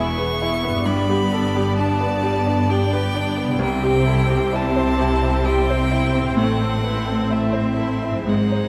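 A brilliant grand piano accompanies this longing, bittersweet cinematic passage in a rubato 3/4, as a single vibrato-rich solo violin sings the melody above a close studio violin section while a distant, smooth chamber violin section carries a second line, and a clear viola section, lush cello and double bass sections, and a very quiet, ringing fingerpicked harp fill out the E, G, C and Am harmony inside a moderate scoring-stage reverb.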